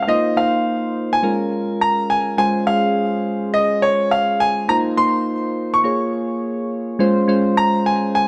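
A 16th-note swing gives this upbeat, bouncy R&B fragment its lilt, as a bright, polished concert grand carries the melody over round, mellow electric-piano-like synth keys treated with chorus, moving through F7sus4, Bbm7 and Dbmaj7 in a dark, warm production set in a moderate echo chamber reverb with small room ambience.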